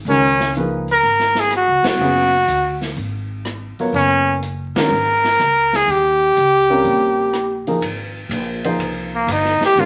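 A spiritual, hypnotic modal jazz excerpt in Db mixolydian swings at 124 BPM as a clear, up-front trumpet with light vibrato carries the melody over warm, short-sustained baby grand piano chords moving from Db9sus4 to Eb13 to Abmaj9, a woody, growly pizzicato upright bass, and an open acoustic drum kit of hi-hat, dark ride cymbal, rim click and snare, with band accents at 1.8 and 4.7 seconds before the trumpet takes a solo from 7.8 seconds, all bathed in wet studio reverb and vinyl crackle.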